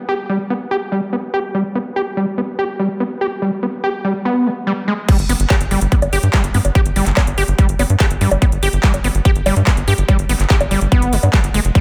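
A dreamy mix soaked in plate reverb carries this intense, psychedelic trance excerpt at 144 BPM in G major, opening on a squelchy, gritty overdriven acid bass riff with resonant filter sweeps, distortion, sidechain pumping and analog delay. At 5.1 seconds the drop arrives with a punchy, up-front electronic kick and a layered dance kit of bongos, crash cymbal, handclaps and metallic hi-hats. A tight, driving sequencer bass with a sawtooth filter pluck joins at 5.2 seconds beneath the acid line.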